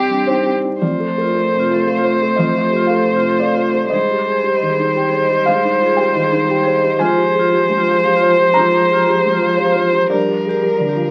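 A rubato 3/4 at about 116 BPM gives this melancholic neoclassical piece for piano and strings a longing feel, tuned slightly high to A4 = 441 Hz. Up front, a single rich violin carries the melody with smooth, even, bowed vibrato. A lone cello sits farther back, clear and distant, tracing a second line beneath it. A felt-muted upright piano supplies the accompaniment from C2 up to Bb5, sounding soft, mellow and intimate, with a dark, thick-felt tone. At 0.8 s a vibraphone joins with arpeggios struck by medium hard mallets, motor off; it is close-miked and dry, with a full, metallic ring. The harmony drifts from Cmadd9 through F, Abmaj7 and Fmadd9/Ab to Gm7, all heard through moderate studio reverb and the crackle of a very old 78 rpm record, in a short section cut from a longer piece.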